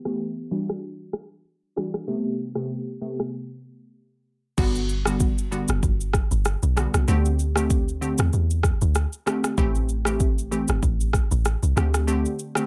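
A glassy, chorused wavetable pluck with a filter sweep opens this sunny, breezy afrobeats excerpt alongside an up-front electronic drum kit of deep kick, rim click, shaker and crash, pausing for a short break at 3.3 seconds before a round, dark log drum bass enters at 4.6 seconds under lightly reverberant seventh and ninth chords with a relaxed 16th-note swing.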